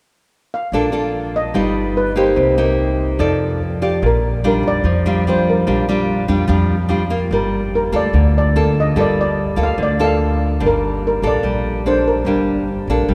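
A deep cathedral reverb, with a tail of 6.4 seconds, washes over this short bossa nova cut from a longer piece, recorded in a church or concert hall. At 146 BPM in a straight 4/4 in Bb major, the mood is sophisticated and sunny. A double seconds steel pan carries the melody from 0.5 s, its metallic, shimmering tone softened by rubber sticks into something mellow, with a boxy small-room character of its own. Up front, a classical nylon-string guitar is fingerpicked with a warm touch and the occasional finger squeak, while a woody pizzicato upright bass on steel strings anchors the low end. The harmony moves through rich colours such as Bbmaj7, G7alt, Gm9 and a rootless Ebmaj7#11/G, and the guitar and bass ring on until 13.1 s.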